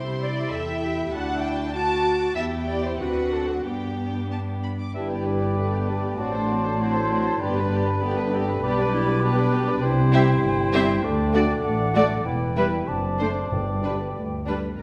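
Up front, a close, intimate double bass section anchors this graceful, cheerful excerpt from a quick classical-period movement in G major at 98 BPM in 2/4, played with a rubato feel. Softly bowed sul tasto strings carry it from the opening: a light-vibrato violin section sings the melody, a dark, floating second violin section shapes a second line, and violas and a smooth-topped cello section sit in the background. Between 4.9 and 5.0 seconds the winds and brass join: a hollow silver flute, a warm cor anglais and a clear clarinet add second lines, a distant, roomy bassoon accompanies, a very quiet mellow horn section holds chords, and a soft-edged trumpet section adds background stabs, before round, dry timpani on G enter at 13.5 seconds, all set in a lush scoring-stage reverb.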